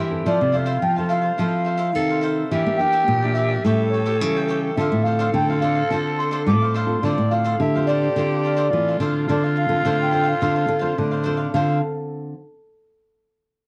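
Samba in D minor at 106 BPM, this bittersweet yet lively passage is cut from a longer piece and set in a dark production with moderate studio reverb. A mellow, reedy accordion carries the melody from 0.3 seconds, its smooth tone showing a slow beating and a touch of slapback echo. Beneath it, a growling tenor saxophone plays a second line, breathy and gritty with vibrato, subtone, scooped notes and a soft attack in a jazz style. A crisp, picked cavaquinho and an up-front, fingerpicked nylon-string guitar provide accompaniment, while a second nylon-string guitar, full-bodied with fresh strings and an audible finger squeak, sits in the background playing thumb-plucked bass. The harmony moves through Fmaj7, Em7b5 and A7 to Dm7, and once the other parts stop at 11.8 seconds, the guitar accompaniment rings on alone until 12.3 seconds.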